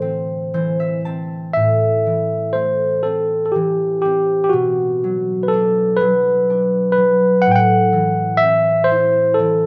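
Celtic folk slow air in A dorian, longing and haunting, moving at a rubato 40 BPM in 6/8, where a bright, barky tine electric piano carries the melody up front over a fingerpicked, ringing concert harp that opens with a fill in the first 1.5 seconds and accompanies through chords of Am, Bm and back to Am, all set in a recital hall reverb with a 1.5-second decay in this excerpt cut from a longer piece.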